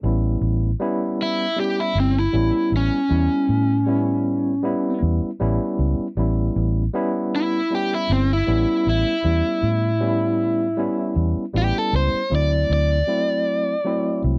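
A crunchy overdriven guitar carries the melody in this laid-back, swaggering soul blues excerpt, entering at 1.2 seconds and playing a picked, up-front solo with a warm, driven edge. Beneath it, a vintage muted fingered electric bass holds down the low end from the start, its tone dark, round and punchy, with a foam-muted thud that sits close in the mix. A tine electric piano supplies the accompaniment, sounding clean through its built-in speakers and slightly lower in level than the other two parts. The groove is straight-eighth in 4/4, resting on an A9 chord before moving to D9 at 12.3 seconds. The sound is dry and close, in the manner of a 1970s studio recording, with little reverb, and the passage is cut from a longer piece.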